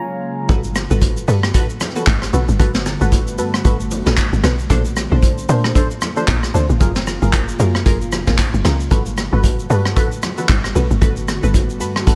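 Relaxed and warm, this amapiano excerpt moves at 114 BPM in G major with a gentle swing on the sixteenths. It opens with a brief break in which a glassy, bell-like FM electric piano plays a short fill, treated with chorus and phaser, while an ethereal, airy pad of detuned unison voices sits in the background with its ensemble chorus, built-in reverb and sidechain pumping. At 0.5 seconds the drop arrives: a tight, percussive log drum bass sits up front beside a vintage brush drum kit with a high-tuned snare, tight kick, hi-hat, rim click, shaker and handclaps, its top rolled off in a small room. Punchy sawtooth chord stabs with a filter sweep, moving notch, chorus and tape echo float over the groove, while very quiet, ringing congas and bongos add a band-limited, vintage texture. The harmony moves through lush ninth chords, from Gmaj9 to Bbmaj9 and F#maj9 before returning to Gmaj9, all wrapped in a small room reverb.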